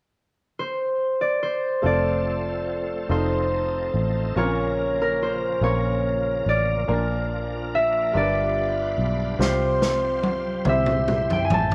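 Light studio reverb gives this slow gospel excerpt in 6/8 a gentle, roomy glow and a jubilant, hopeful mood. A ringing, thumb-plucked concert harp opens alone at 0.6 seconds and carries the melody up front. At 1.8 seconds the band joins: a clear, slightly worn grand piano plays accompaniment, a round, dark fingered electric bass sits up front, and a bright tonewheel organ holds shouting sustained chords through a fast rotary speaker with chorus vibrato. Beneath them, a very quiet French horn section adds smooth, soft-attacked sustained chords with a light vibrato. The chords move from F through F7, Bbm and Bb to G7, then settle on Csus4 and C. At 9.4 seconds a distant, swinging big-band drum kit enters with a snare and tom fill, its top rolled off and warm.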